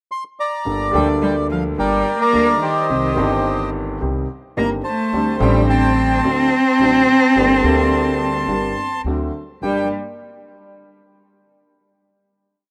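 A reedy, dark bandoneon leads this short, sultry and passionate tango in G minor, spinning a motif-based melody in sentence-like phrases at a rubato 107 BPM. A bowed cello sings an expressive second line with vibrato, portamento and octave doubling, while a vintage-toned concert grand with deep bass and a woody pizzicato upright bass drive the sincopa rhythm. From 5.1 seconds a soft-attack, floating chamber string section adds background sincopa stabs before the piece settles on a final G minor chord at 9.6 seconds, all in the light reverb of a rough, small-room home demo.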